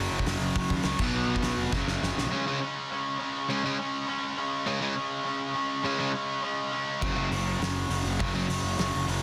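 A rowdy, rebellious punk rock excerpt at 204 BPM opens with three overdriven guitars hammering out a riff together: a double-tracked, bright distorted electric guitar sits up front, while a crunchy, warm-toned guitar and a bright, hollow-bodied semi-hollow guitar fill in behind it. A fuzzed, growly picked bass and a loose indie drum kit play alongside the guitars in the opening power-chord stretch, with a fat snare, punchy kick, dark cymbals and a pumping studio room sound placed up front. After a drum fill, the feel drops into half time at 2.3 seconds as the chords move to C#5, and the bass and drums fall away, leaving the guitars on their own. Bass and drums crash back in at 7.0 seconds on an F#5 chord, driving the riff to the cut-off. The dense, heavily limited modern master carries only a light reverb, keeping the sound tight and aggressive.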